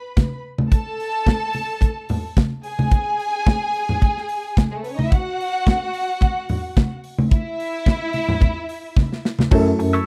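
Disco at 109 BPM in F# minor, driving and danceable, where a lush, bowed symphonic violin section with vibrato rides over a punchy, polished acoustic drum kit and thick-skinned, low-tuned vintage congas in a dry, close 1970s-style small room, until a drum fill at 9.0 seconds leads to an F#m7 at 9.5 seconds, where a mellow bass clarinet, an intimate baby grand piano with audible action noise and a clean, hollow-body electric guitar with wah and chorus all enter briefly.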